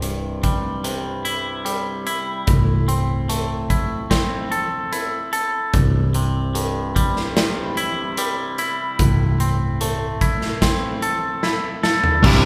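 Post-rock with a hopeful, soaring mood, played by a band live in one room with a moderate large studio reverb: a twangy, clean electric guitar with spring reverb picks arpeggios over C and Am/C chords, supported by a round, foam-muted picked bass and a big acoustic rock kit with bright cymbals and a punchy kick. A drum fill from 11.4 to 12.2 seconds leads into a bright, overdriven electric guitar riff that bursts in up front at 12.2 seconds, just before this cut from a longer piece ends.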